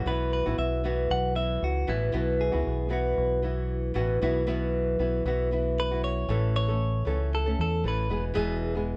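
A sunny, carefree acoustic pop excerpt at 116 BPM in 4/4 with a light 16th-note swing opens with a twangy, compressed clean electric guitar carrying the melody over a dark, fingerpicked nylon-string guitar and a round, punchy fingered electric bass sitting up front, the band sounding live in one room with light reverb as the harmony moves from Bsus4 to A at 6.3 seconds and lands on E at 8.1 seconds, just before the melody drops out at 8.2 seconds.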